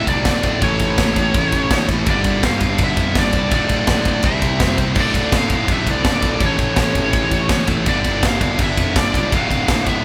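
Recorded as a band playing live in one room with light reverb, this epic, aggressive heavy metal passage, cut from a longer piece, drives at 166 BPM in D minor through Dm, A, Gm and C chords. A bright high-gain lead guitar carries the melody over three distorted guitars riffing beneath it (a compressed one and a high-gain one in the background, plus a very quiet double-tracked one), while a growly, fuzz-overdriven electric bass sits beneath. Up front, a big acoustic rock kit with a tight kick, medium-tuned snare, crash and ride cymbals enters at 0.1 seconds, carrying a big-room sound.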